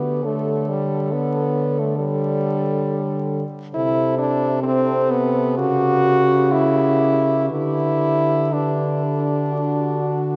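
Two warm French horns sit up front, one carrying the accompaniment and the other a low bass line touched with light vibrato, in this serene, tender classical passage for horn quartet, played rubato and cut from a longer piece. Behind them, a mellow, smooth-topped horn sings the melody while a clear, distant horn with light vibrato shapes a second line. A wet church reverb and a layer of vinyl crackle surround the quartet throughout its 10.4 seconds, with the harmony coming to rest on D at 9.5 seconds.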